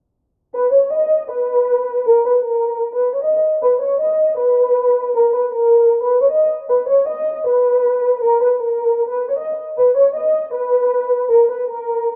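Eerie and brooding, this short hip hop fragment moves with a half-time feel as a bowed violin section carries the melody from 0.5 to 12.1 seconds. The ensemble sits up front with a lush, expressive tone, soft attacks, vibrato and a smooth top. A dry, gritty hardware sound with a low-pass filter and light studio reverb gives the whole cut a murky, shadowed character.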